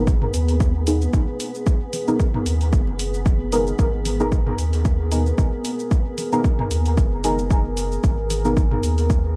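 A dark, sawtooth-edged analog pad, a soft, detuned chord stab with phaser, filter sweep and dub echo, a round sine sub bass and a grainy, flickering background texture open this cavernous, nocturnal dub techno excerpt on a G#madd9 chord in G# minor, all breathing with sidechain pumping. From 0.1 seconds an up-front, overdriven kick drives a swung 113 BPM 4/4 groove alongside a dry analog shaker and hi-hat, and from 0.2 seconds layered, overdriven electronic toms and congas join in the background with dub echo and small-room ambience. Light reverb gives the mix its deep, shadowy space.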